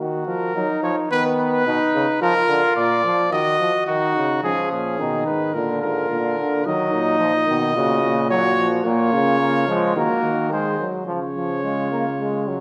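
In a straight 4/4 at 108 BPM, this driving, serious classical canzona for brass ensemble moves with steady purpose in its imitative writing. A mellow, close-miked flugelhorn with light vibrato opens on the second line, and a warm trumpet joins almost at once to carry the melody up front. Beneath them, a clear trombone supplies accompaniment from a distant, roomy position. At 4.4 s a bass trombone enters on the bass line, its soft attack, light vibrato and vintage tone rounding out the low end. The harmony sits in Eb minor until 8.9 s, when it turns toward Db major, and a generous scoring-stage reverb gives the ensemble a wet, spacious setting through to the close of this short cut from a longer piece at 12.6 s.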